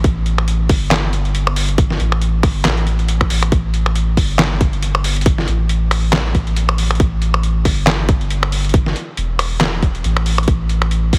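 Meditative and heavy, this cut from a longer deep dubstep piece rolls at 138 BPM in a half-time 4/4 with swung 16ths, riding a drop that runs the full 11.2 seconds. A soft, round dub sub bass moving between E1 and A1 sits up front beside a tight, tape-toned electronic kick. A gritty, pitched-down sampler-style trip hop kit, overdriven and compressed, supplies finger snaps, handclaps, hi-hat and a medium-tuned snare, all inside a digital ambience with a heavily compressed radio sound.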